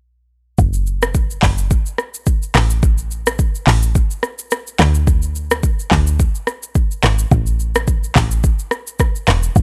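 A breezy, joyful afrobeats groove with a light sixteenth-note swing opens at 0.6 seconds on a punchy, woody log drum bass with a dark, decaying FM tone and an up-front electronic afro-pop kit of deep kick, dark hi-hats, handclaps, rim click and shaker, all captured in a dry, gritty hardware recording with a faint mains hum.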